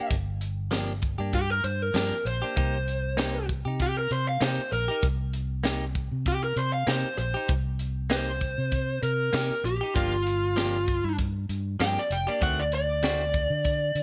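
A straight-eighth soul blues groove at 98 BPM in 4/4, with a light 16th-note swing and a soulful, mournful mood in G minor, moving from Gm7 to Cm7 and back before landing on D7b9. A tight funk drum kit with a high-tuned snare, hi-hat, tambourine and a tight kick sits up front alongside a dark, round fingered electric bass, while a bright, twangy, compressed clean guitar, recorded direct, adds stabs until 13.2 seconds. Over this, an overdriven, lo-fi lead guitar through a small cranked amp carries a picked solo across the whole excerpt, all in a dry room with little reverb.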